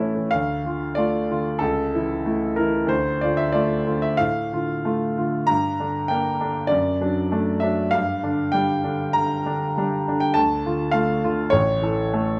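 A romantic classical character piece for solo piano in D minor, this brooding, passionate excerpt moves with a free rubato feel at around 83 to 103 BPM in 4/4. The concert grand sounds clear, open and up front, with a deep bass reaching down to A1 and a range climbing to Bb5. Chords pass from Dm through A/C# and Gm to D/F#, then settle back on Dm before closing on A at 11.5 seconds, all set in a moderate large-studio reverb.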